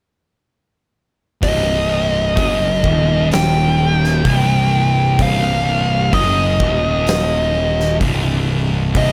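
A straight 4/4 groove drives this heavy, brooding stoner and doom metal excerpt, where from 1.4 seconds an oversized low-tuned drum kit with a punchy kick, fat snare, hi-hat and a gritty, pumping room sound anchors two thick, distorted fuzz guitars grinding out a riff in the background, a bright, growly overdriven picked bass sitting up front, and a dark fuzz lead guitar carrying the melody through wah, distortion and delay, all wrapped in a small room reverb.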